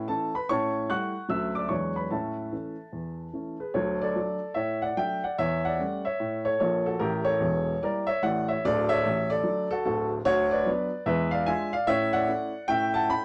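A woody, open upright piano plays alone and up front, launching into an exuberant, playful stride jazz passage at 147 BPM with a swung 4/4 feel in A major. At 3.7 s the music moves into D major, and the harmony runs through colourful chords such as A7b9, Bm/D and E7b9 before settling on A and a closing A7. Light reverb and a dark, warm production frame this short cut from a longer piece.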